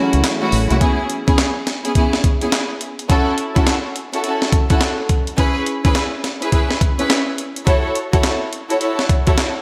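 This new jack swing R&B clip has a slick, punchy mood and a swung sixteenth-note feel. It opens with a short break in which a mellow tine electric piano with slapback echo and a swirling, detuned analog pad with phaser and chorus sit in the background, while a deep, round fingered electric bass comes in up front. The piano, pad and bass all drop out at 0.8 seconds, leaving an intimate, softly bowed studio string section playing stabs with light vibrato and slapback echo, alongside a gritty, compressed sampler-style breakbeat kit. The kit has a thumpy kick, a high-tuned snare, handclaps, hi-hat and tambourine, and it runs to the close at 9.6 seconds. The harmony moves between F#m7 and C#m7 under a lush hall reverb that gives the mix a big arena sound.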